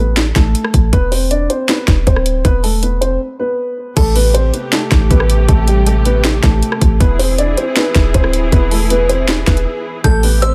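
A half-time trap groove at 158 BPM drives this dark, eerie hip hop excerpt in A minor, with a trap drum kit entering at 0.2 seconds: a hard-clipped kick, sharp snare, metallic hi-hats, rim clicks, finger snaps and crash cymbal, all electronic and up front. Beneath it, a deep, boomy 808-style bass with a sine tone and fast, decaying attack sits low and mellow, matching the drums in level. A dark, boxy grand piano carries the melody from the start, its long sustain trailing through a digital delay, moving over an E5 chord, then Am7 as the second section begins at 4.0 seconds and E at 7.0 seconds. There a lush, bowed symphonic string section enters underneath, sustaining chords with vibrato and a smooth, focused top, set back in the mix. Brief breaks open up the texture, and at 10.0 seconds a delicate, tinkling FM bell adds a high second line shimmering through chorus and phaser. The sound is dry and close, with little reverb.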